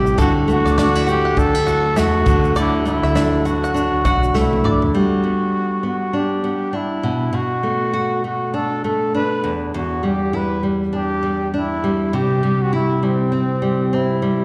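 A relaxed 100 BPM 4/4 groove with a light 16th-note swing carries this carefree, easy-going acoustic pop passage in D mixolydian, where a breathy, whispered, close-miked trumpet sings the melody with vibrato over fingerpicked nylon-string guitar full of finger squeak, while a twangy banjo in the background, a punchy fingered electric bass, a very quiet, lightly overdriven tonewheel organ with slow rotary, and an airy country drum kit fill out the opening until a drum fill at 4.4 s leads them to drop away by 4.9 s, leaving trumpet and guitar to move from Gmaj7 through Bm7 and Em7 to C, both bathed in plate reverb and slapback echo within the hall-like sound of a live gig heard through the venue's PA.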